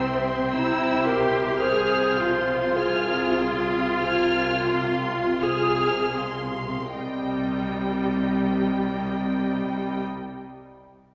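A rich viola section sits up front in this solemn, yearning classical passage, its bowed accompaniment full of vibrato and expressive portamento, heard at a slight distance within a wet concert hall. Above it, a warm violin section carries the melody high in its range, singing with vibrato and portamento from close by. A dark solo clarinet in a classical style plays a second line, as does an intimate second violin section with light vibrato and gentle attacks, tucked into the background. A focused cello section, smooth-topped and set back, and a clear double bass section hold a low C beneath. The rubato pulse slows through the opening 6.9 seconds as the harmony moves from C7 through Fm/C before arriving on Cm, in a fragment cut from a longer piece.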